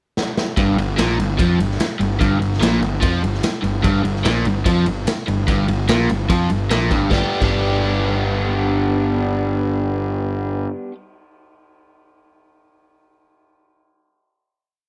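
Sunny and driving, this short classic rock piece in G mixolydian charges along at 147 BPM in a straight 4/4, opening with a drum fill on a raw garage kit. At 0.6 seconds an overdriven, double-tracked electric guitar riff arrives alongside a fuzz-laden picked bass that doubles it in driving eighth notes over Gm7, while the punchy kick, medium-tuned snare, crash and ride sit saturated and gritty in a bright stone room with a rolled-off top. At 7.1 seconds the band lands on a final G chord that rings out in studio reverb, the guitar sustaining until 10.9 seconds.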